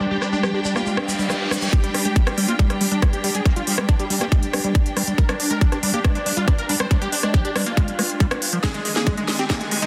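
Psychedelic trance at 139 BPM in a straight 4/4, this excerpt from a longer piece feels alien and hypnotic. A filter sweep opens it, with a grainy, mellow tube shaker in a live room, an overdriven techno drum kit of cracking snare, rim click and smooth hi-hats, and a reverse cymbal and riser rushing in before the tight, up-front electronic kick lands at 1.7 seconds. From there a long build-up unfolds over a squelchy, resonant liquid acid bass riff whose filter keeps sweeping, with phaser, sidechain pumping and tape echo. Above it, a bright, detuned supersaw stab carries the melody through phaser, 12-bit sampler grit and tape echo, while a rich, bowed chamber string section adds vibrato texture and a very quiet evolving wavetable pad holds morphing sustained chords. A metallic, wobbling FM bass sits barely audible beneath, and a drum fill from 8.6 seconds drives into a final riser, all in a lush hall reverb with a dense, heavily limited modern master.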